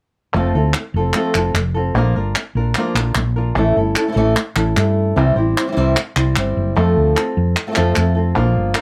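Fiery and dramatic, this brief flamenco cut at 150 BPM sets a fingerpicked acoustic flamenco guitar, its finger squeak audible up front, over a dark, round, woody fretless electric bass and crisp palmas hand claps, all playing together from 0.3 seconds through a chord progression of F, Bb, A, C and back to F, captured with close, detailed microphones and little reverb.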